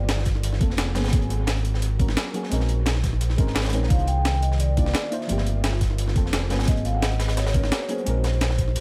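Melancholic and rolling, this short cut from a longer liquid drum and bass piece moves at 173 BPM in a straight 4/4, its minor eleventh chords drifting from Gm11 through Abm11 and Bbm11 to Cm11 before circling back. A deep, full sine sub bass with an added octave sits up front from the start, joined at 0.3 seconds by an overdriven, knocking electronic kick re-recorded in a small room. Two breakbeat kits layer hi-hats and high-tuned snares: one sampler-style, compressed and gritty, the other dark, saturated and rolled-off, with high-pass filtering on its hats, snare and room plus a dub echo. Soft, nasal chord stabs with a filtered pluck decay through chorus and tape echo, while an ethereal, detuned pad breathes in the background with ensemble chorus and its own reverb. After a brief opening touch, a metallic, ringing vibraphone played with medium mallets carries the melody from 3.9 seconds through tape echo, all within an echo-heavy studio ambience.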